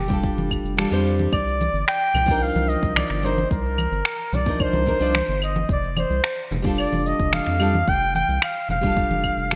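The recording has a bright 1980s-style digital sheen, set in a moderate lush hall reverb with a touch of small room ambience, in this relaxed, warm sunset chillout fragment cut from a longer piece. Up front, a flugelhorn carries the melody in a vintage jazz style, its vibrato and scooped notes trailed by digital delay. Beneath it, a round analog bass sits deep and dark with a fast attack and sustained tones, while a fingerpicked nylon-string guitar adds classical accompaniment through its own delay. Electronic cabasa, claves and finger snaps sit forward with gated reverb over a deep, tape-tinged electronic kick drum, and low-tuned, ringing congas played with hard hands linger in the background from 0.4 seconds. The harmony moves from F69 to Cm11 at 1.3 seconds and returns to F69 at 5.7 seconds.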